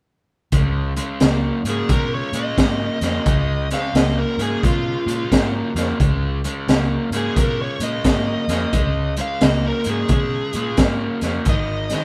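A lightly reverberant live-room sound frames this gritty, swaggering electric blues shuffle at 88 BPM, with swung eighth notes and a Db mixolydian flavour. From 0.5 s, a crunchy, picked overdriven guitar riff and a round, foam-muted vintage fingered bass ride over an up-front, saturated breakbeat kit with a high-tuned snare, tight kick and rolled-off top. At 1.7 s, a smooth overdriven lead guitar with digital delay carries the melody, sitting a little lower in the mix.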